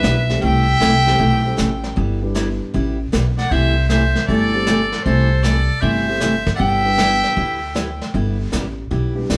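A band playing live in one room with moderate studio reverb gives this playful, down-home western swing cut at 155 BPM in G major its sound: a clear, earthy fiddle carries the melody with light vibrato over a buzzy, metal-muted trumpet second line with scooped notes, both stopping at 8.1 s, while a dark, mellow upright piano keeps the swung eighths going to 9.3 s, and a bright picked steel-string acoustic guitar with finger squeak, a woody, thumpy pizzicato upright bass up front and a muffled, lo-fi brush drum kit carry them on to 9.4 s.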